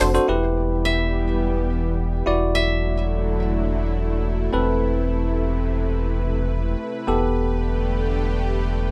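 A woody koto, played with fingerpicks, rings out on a high E from 0.9 to 4.5 seconds with plate reverb and digital delay, set over a bell-like tine electric piano, a lush, detuned supersaw pad and a deep, up-front sub bass moving through Em, Dadd9/E, Amadd9/E and Gadd9/E in this driving, energetic pop excerpt with a rough home-demo sound.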